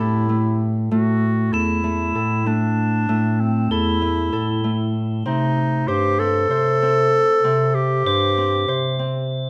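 Set in a lopsided 7/8 with a straight feel, this hypnotic, pensive fragment of contemporary chamber music is cut from a longer piece. A very quiet, mellow woodwind section holds a sustained chord with light vibrato for the opening moment, giving way at 0.9 seconds as the harmony moves from Am7 to a bare A5 and later C5. Throughout, an acoustic Celtic harp spins fingerpicked, ringing arpeggios while a dark bass clarinet with a smooth top carries the bass line up front. A clear, close-miked clarinet plays a classical-style second line until 9.3 seconds. Bell-like crotales, struck with plastic mallets, add a high, shimmering texture in two passages, first entering at 1.5 seconds. Detailed close microphones capture the players inside a moderate recital hall reverb.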